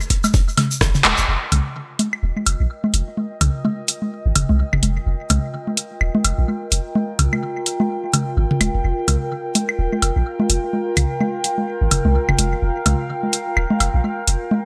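Hypnotic and clinical, this minimal techno excerpt swings its sixteenths as a grainy egg shaker, a knocking electronic kick and a faint loose indie kit with pumping hats and snare open the excerpt in its first second, joined from the start by a garage kit of handclaps, metallic hi-hats and rim clicks that runs throughout, alongside analog, tape-tinged electronic congas, woodblock and toms smeared with digital delay. A deep, punchy sine sub bass with a pitch-drop attack pumps beneath, and from 2.2 seconds a warbling, nostalgic, lo-fi pad of detuned sawtooth and triangle tones swells in with a slow attack through chorus, phaser and its own reverb, pumping in time. A drum fill and band accent land at 1.0 seconds, just ahead of the shift from Fm7 to a hollow F7 chord at 1.3 seconds, all set in a lush hall reverb.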